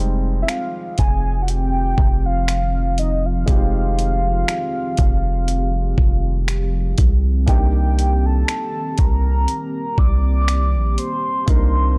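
A slow 60 BPM groove in 4/4 with a light 16th-note swing drives this late-night, sensual contemporary R&B excerpt, where a gritty, compressed sampler-style soul kit of thumpy kick, hi-hat and finger snaps sits up front beside a deep, long 808 bass, while a dark, mellow grand piano and a moody, slow-attack ambient pad with chorus, built-in reverb and sidechain pumping hold Fm7 before moving to Cm7 at 7.5 seconds, under a velvety, detuned synth lead with chorus, tremolo and digital delay carrying the melody in the upper register, in a dry, dark production.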